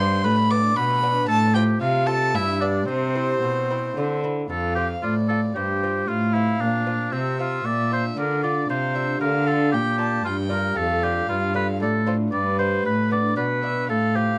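A clear oboe carries the melody up front, its light vibrato lending classical poise to this dance-like, flowing baroque-style sonata movement in triple metre. Close beside it, a single violin plays a second line higher up, its airy bow and gut-string tone sounding nasal and reedy. A rich cello, bowed by one player in period style, anchors the bass prominently. A delicate fingerpicked lute fills in the accompaniment on double strings, some doubled at the octave. All four parts play from 0.0 to 14.4 seconds over harmony moving from G through F and C toward B-flat, D minor over F, and back to G, with the same material starting again at 4.5 seconds. Close, detailed microphones capture a dry room, and the recording is cut from a longer piece.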